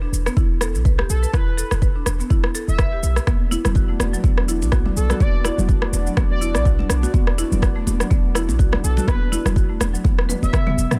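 This is a dry, close-sounding mix with very little reverb, built on an up-front, overdriven electronic kick that sounds re-recorded in a small room. It is a driving, swung afro house cut taken from a longer piece. A buzzing, woody marimba struck with hard mallets plays dark arpeggios through a low-pass filter, with dub echo and sidechain pumping. Beneath it, a deep, boomy 808-style bass with a sine tone and a noise layer pumps in time, thickened by tube saturation. The overdriven deep house kit adds rim clicks, shaker and toms. A smooth, mellow sawtooth lead enters at 1.1 seconds, gliding with portamento and vibrato through analog chorus and dub echo. At 3.3 seconds a warm, chorused analog pad with gritty 12-bit texture moves the harmony from E5 to Bm/E, joined by vintage, band-limited congas in the background, before a drum fill at 10.3 seconds.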